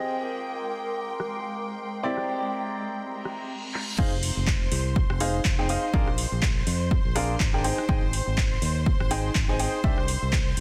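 Piano house at 123 BPM in F dorian, energetic and bittersweet, where a bright, woody upright piano riff with delay and sustained bowed string chords pump against a blurred granular pad until a reverse cymbal and drum fill lead into the drop at 4.0 seconds, bringing in a punchy electronic kick and a growly fingered electric bass beneath a swung house kit of handclaps, rim clicks, filtered metallic hats and crash, all pressed into a dense, heavily limited master.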